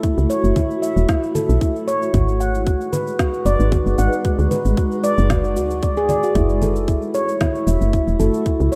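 A ringing handpan sits up front in this short cut from an organic downtempo piece, playing dark, meditative arpeggios with sharp finger strokes on nitrided steel, carried by tape echo. Beneath it, a woody FM bass enters at 0.2 seconds, round and mellow with a fast attack and decaying notes, its sidechain pumping sitting alongside the tight, up-front electronic kick. A granular cloud pad holds sustained chords behind everything, blurred and evolving, with detuned unison sine voices, a moving notch, slow attacks, long releases and its own built-in reverb, and it also carries sidechain pumping. Quieter electronic cabasa, congas and a woody snare fill out the produced percussion at 114 BPM in 4/4, with a light 16th-note swing. The harmony moves from F#m7 to G#m7b5 and back to F#m7, giving the earthy, warm mood a gently unsettled turn. The mix is a rough home demo with light reverb.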